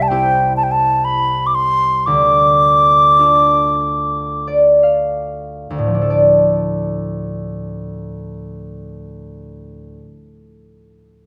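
Longing and haunting, this fragment of a Celtic slow air in free-flowing 3/4 opens with a slowing phrase up to 5.9 s, where a bright, reedy baroque flute with an airy, straight wooden tone sings a high, tongued melody close and up front until 4.5 s, while a ringing, fingerpicked concert harp supports the C to Dm harmony, adds a fill, and carries on alone to 10.4 s, all set in a moderate recital hall reverb.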